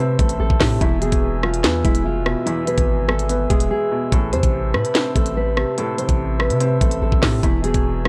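An up-front drill drum kit carries this ominous, menacing hip hop excerpt, its knocking kick, sharp snare, crisp hi-hats, handclaps and rim clicks roughened by vintage 12-bit sampler grit after it enters at 0.2 s. At 145 BPM in 4/4 with a half-time feel, the track sits in A harmonic minor, moving between Am and E, with a brief break from 3.7 to 4.1 s. A long, deep 808-style bass with a sine tone, fast attack and mellow decay anchors the low end. A dark, full-bodied nylon-string guitar carries the fingerpicked melody in a deep classical style, shaped by a low-pass filter and analog delay, while a felt-muted upright piano plays soft, intimate accompaniment with audible action noise behind a low-pass filter. A glass harmonica holds sustained chords with a glassy, pure, ethereal tone and slow attack. The excerpt has a dry, gritty hardware sound in a small room.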